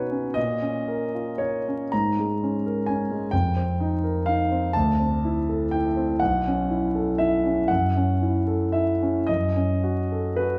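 A solo concert grand piano opens at 0.0 s over a bed of vinyl crackle, playing a hazy, wistful impressionist classical passage in a slow, rubato 6/8 around 34-44 BPM. The piano sits up front and intimate, smooth and vintage in character with deep bass and audible action noise, while a wet recital hall reverb surrounds it. Suspended harmonies drift from A#m through G#sus24, F9sus4, Dsus2 and B9sus4 before reaching F#m7 and F#m6 as the fragment ends at 10.6 s.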